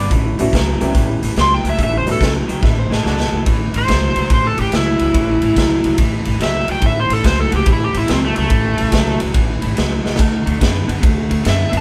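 Opening with a gritty, amplified harmonica line over a dark, slightly broken-up guitar riff with spring reverb and a woody, growly upright bass, this rollicking electric blues shuffle at 143 BPM in A mixolydian brings in a saturated garage drum kit with a boomy kick and a brief polished upright piano, before an overdriven slide guitar enters up front at 1.4 s and takes a solo from 3.5 s over a band that sounds live in one room.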